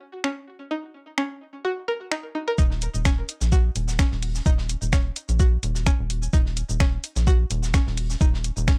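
A knocking, overdriven electronic kick drum sits up front from the drop at 2.6 s, joined there by a rubbery, nasal square bass with sidechain pumping and a very quiet, airy studio kit of hi-hat and snare, all driving this quirky, clinical minimal techno cut in Eb minor at 128 BPM with a light 16th-note swing. Before the drop, from 0.2 s, a twangy, string-like resonator pluck riff with chorus, tape echo and pumping plays over a gritty garage kit of finger snaps, shaker and metallic hi-hats. The sound is dry and lo-fi, like a hardware recording bounced to cassette.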